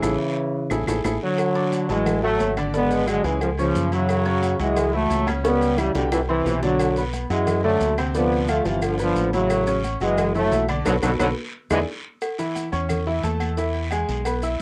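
A brilliant, tight trombone section carries the melody up front in this festive, danceable salsa clip, dropping out at 11.8 seconds while a bright, slightly detuned upright piano with a cassette-tape tinge and a round, punchy fingered electric bass keep the harmony moving. Behind them, high-tuned bongos and cowbell, ringing metal-shelled timbales and agogo bells, woody claves, very quiet damped congas, a raspy guiro and grainy maracas fill out the percussion, with band accents at the opening and again at 10.9 seconds and several drum fills along the way. The whole has the light reverb and homespun character of a cassette recording made at home, and it is cut from a longer piece.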